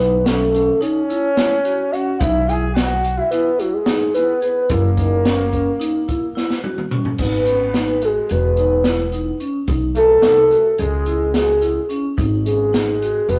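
A hollow, chorus-tinged clarinet-like synth lead carries the melody over a breathy flugelhorn second line, ringing vibraphone arpeggios and woody pizzicato upright bass, with an open jazz drum kit joining at 0.3 seconds in this driving, bright progressive piece in 9/8 at 216 eighth-note beats per minute. The kit's boomy kick, high-tuned snare and dark cymbals play a fill from 6.4 seconds that leads into a new section at 7.2 seconds, where the chords move through G#m, B and C#m. The whole band sits in a moderate stone-room reverb with the rough, tube-saturated feel of a rehearsal-room recording, cut from a longer piece.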